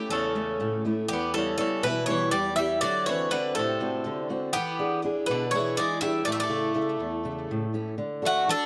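Greek folk in a bright, energetic 7/8 at 244 BPM in eighths, set in D major, where an up-front, metallic lead bouzouki with tape echo carries the melody over fingerpicked steel-string acoustic guitar and a second, mellower bouzouki line entering at 0.1 seconds, moving through A, Em, D7 and E7 in a close, detailed sound with light reverb, cut from a longer piece.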